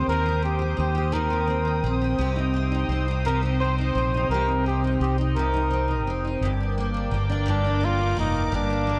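Worn, warbling cassette tape with a drifting pitch colours this short pop fragment, heard in a small room with light reverb. At a slow 57 BPM in a straight 6/8 and C minor, a clear, smooth-topped trumpet with vibrato and delay carries a dramatic, melancholic melody up front, alongside a bright, full-bodied, double-tracked picked acoustic guitar and a round, punchy fretless electric bass. Behind them, an airy, detuned sawtooth pad with chorus sustains evolving chords, moving from Eb6 to Cm at 2.2 seconds and Gm at 6.4 seconds.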